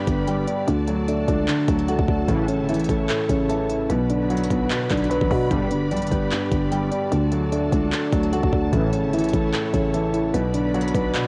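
Hip hop and trap at 149 BPM in a half-time feel, this brooding, hard-hitting passage from a longer piece sets a muted, intimate felt upright piano, soft chorused electric-piano-like synth keys playing tape-echoed arpeggios and lush bowed strings holding sustained chords over a growling, buzzy 808-style bass and an overdriven trap kit with knocking kick, crisp hi-hats and handclaps, while mellow synth brass stabs colored by phaser land briefly at 2.3, 5.5 and 8.7 seconds, the chords cycling through G, D, A and B minor in a dry, home-recorded cassette sound.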